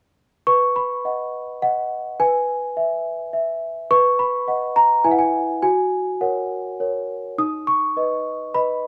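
Classical lullaby for solo celesta in a gently rubato 3/4, tender and innocent, its bell-like, airy tone sitting up front in light reverb as it moves through B major harmonies from 0.5 to 8.9 seconds in this short fragment of a longer piece.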